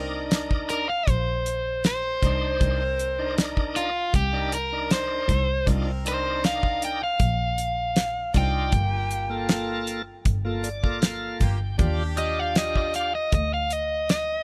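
Smoky and soulful, this short cut from a longer soul blues track moves at an unhurried straight-eighth pace in 4/4. An overdriven electric guitar carries the melody as a solo, bright, picked and compressed, sitting up front over a dry, polished 70s drum kit with a fat snare and tight kick. Beneath them, a dark double bass is bowed sul tasto by a single player, its soft attack, airy tone and light vibrato giving an intimate, close presence. A shouting tonewheel organ, lightly overdriven through a slow rotary speaker, fills out the accompaniment and steps forward with a short fill at 10.3 seconds. Further back, a punchy, brilliant horn section holds sustained chords with light vibrato as the harmony moves from Cm7 to Gm7 and settles on Ebmaj7, all in a dry room with little reverb.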